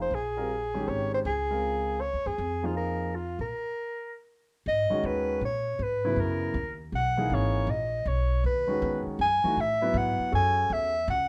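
A breathy, whispered soprano saxophone sings the melody over dark, mellow concert grand piano and a woody, thumpy pizzicato upright bass in this hypnotic, searching modal jazz fragment that swings in 3/4 under light reverb, pausing on a stop at 3.5 seconds before shifting to a new tonal center at 4.7 seconds, with the piano falling away at 10.9 seconds.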